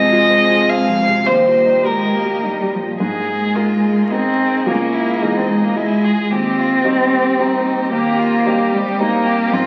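A clear, focused solo violin carries the melody with vibrato, while an expressive cello sits up front beside it, adding a second line with vibrato and portamento, in this hopeful, intimate neoclassical passage in a rubato 3/4, cut from a longer piece. Beneath them, a soft, mellow felt-muted upright piano accompanies with audible action noise, while a dark, woody string section holds sustained chords in the background, moving through harmonies such as Fm7, Absus2 and Dbmadd9. Everything plays throughout the 9.7 seconds, bathed in a wet large-studio reverb and the crackle of a very old 78 rpm record.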